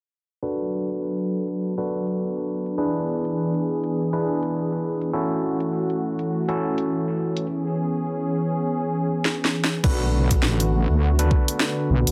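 Glitch hop with a swaggering, funky mood, this excerpt from a longer piece rides a swung 4/4 groove. A smooth, detuned sawtooth analog pad holds sustained chords with chorus and sidechain pumping, while a barky, gritty overdriven tine electric piano plays stabs through a combo amp, with delay and its own pumping. Both the pad and the piano carry filter sweeps through the opening stretch, as the chords move from Bm7 through E7, F#m7 and C#m7. The overdriven drum kit enters at 0.9 seconds with a cracking snare, bright hats and crash cymbal, and a drum fill leads into the next part at 9.3 seconds. At 9.8 seconds the harmony returns to Bm7 as a heavy, wobbling, saturated bass arrives up front with a knocking electronic kick, all in a moderate studio reverb.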